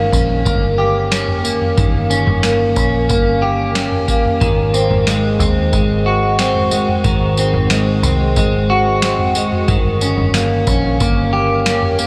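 A straight 4/4 pulse at 91 BPM from a booming analog drum machine, its deep kick, crisp snare, tambourine and toms re-recorded in a small room, carries this ethereal dream pop excerpt, where a clean, up-front electric guitar picks arpeggios through lush chorus and analog delay over a dark, foam-muted, punchy vintage bass, moving from Eb7/G to Ab7 at 4.4 seconds and back at 9.7 seconds, all soaked in a huge ambient reverb with an 8.1-second tail.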